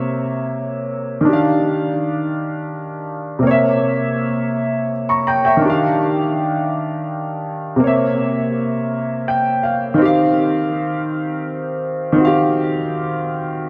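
R&B in Eb major at a slow 55 BPM in 6/8, this tender, sensual excerpt features a solo concert grand piano with deep bass and a polished, up-front presence, coloured by lush chorus and analog delay and bathed in the dreamy haze of a church reverb, as it sways between C7b9 and Ebmaj9 before a fill at 8.9 seconds leads to a closing Eb6/9 at 10.0 seconds.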